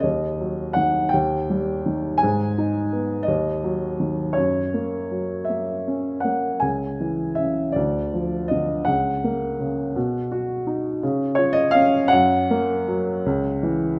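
A dark, woody upright piano plays alone and up front through this 14-second fragment of a longer classical piece, its mellow tone spanning C#2 to G#5. The lyrical solo unfolds in 6/8 with uneven beats and free rubato, tuned to A4 = 438 Hz, while the harmony drifts from D#m through G#m, F#, C#m and Dm, then moves through B and C# to F# before closing on C#m. A moderate recital-hall reverb surrounds the playing, lending a wistful, reflective air.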